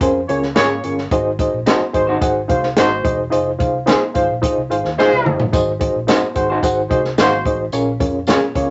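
A reedy, worn electric piano sits up front in this joyful, danceable 1960s-style soul excerpt, its lightly overdriven tone pulsing with fast tremolo through built-in speakers and sounding slightly out of tune. Beneath it, a vintage muted fingered electric bass gives a round, foam-muted, amped low end, while a compact cocktail drum kit in a small room plays hi-hat, kick, snare and toms with a tight kick, a high-tuned snare and a rolled-off top. A mellow horn section carries a punchy, smooth-topped second line from 0.3 seconds, and an electric guitar through a small old amp adds dark, slightly broken-up picked stabs. After a drum fill at 5.0 seconds, a jingly tambourine joins at 5.5 seconds, close and dry in the background. Moderate studio reverb and a softened high end frame the chords as they move from Bbm7 through Ab7 and Fm7, then back to Ab7 and Bbm7.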